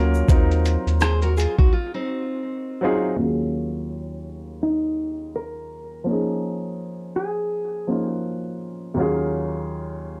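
A round, deep analog bass and a dark, woody upright piano with cassette-tape coloring open this hazy, nostalgic lo-fi hip hop excerpt at 83 BPM in Eb dorian, the piano playing throughout. They are joined by a grainy egg shaker in the background, a muffled, sampler-style drum kit whose thumpy kick, hi-hat, rim click and shaker bring 12-bit grit until 1.7 seconds, and a fingerpicked nylon-string guitar with tape echo. A break arrives at 1.7 seconds, and a clean, hollow-body jazz guitar carries the melody from 4.6 seconds beneath a filter sweep.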